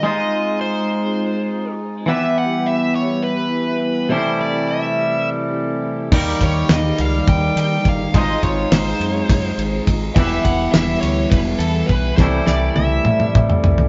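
A live-in-one-room recording with moderate studio reverb and a dulled top end gives this psychedelic rock excerpt a close, period feel, its mood trippy and kaleidoscopic in a straight 7/8. From the opening, a dark, overdriven lead guitar with wah carries the melody, while a clean, compressed, twangy electric guitar plays a riff up front. Behind them, a string machine voiced as violas holds soft-attack sawtooth chords in the background, its ensemble chorus and moving notch lending a mellow, vintage shimmer. At 6.1 seconds a growling, round fingered bass with overdrive enters alongside a dry, mid-forward 70s drum kit with a fat snare, tight kick, crash, ride and toms. The chords cycle through G#6, Em, C6 and D#, and the drums close the passage with a fill from 12.2 seconds.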